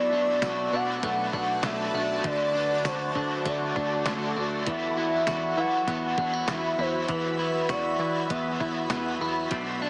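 Squeezed through a heavily compressed, small-speaker radio sound with light reverb, this ethereal, melancholic dream pop excerpt at 99 BPM moves through Bm7, D and Esus2 as a hollow, woody clarinet-like synth lead with chorus, vibrato and digital delay carries the melody over bright overdriven electric guitar with harmonic tremolo and ensemble chorus, a shimmering granular pad with phaser, up-front clean electric guitar arpeggios with subtle chorus and delay, and a punchy, funky analog bass, while a detuned 8-bit drum machine of thumpy kick, fat snare, hi-hat and tambourine enters at 0.4 s.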